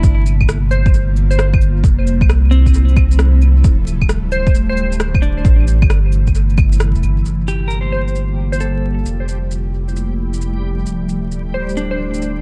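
Low on room sound yet heavy with echo and dusted with vinyl crackle, this rainy, melancholic future garage excerpt sets a round, up-front sub bass and an ethereal, detuned pad under a clean electric guitar shaded by tremolo and tape echo, all three pumping against the beat, alongside gritty, overdriven shaker, cabasa, claves and rim click, a deep overdriven kick that drops out at 6.7 s, a glassy, warbling wavetable pluck ringing on C5, and a dreamy reversed granular texture that swells in at 8.4 s.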